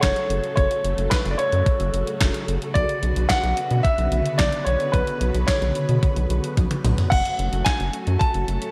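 Synth-pop in F# minor at 110 BPM, this nocturnal, driving excerpt moves from F#madd9 to Bmadd9 and back. A clear baby grand piano carries the melody through slapback and tape echo over sustained, mellow string-machine cellos colored by phaser and ensemble chorus, while a rubbery, hollow square bass with a fast-attack filter pluck sits up front. A thumpy gated 80s digital drum machine with a gated reverb snare, handclaps, hi-hat, crash and toms drives things, with a drum fill from 6.6 to 7.1 seconds, all inside a lush hall reverb that gives a big arena sound.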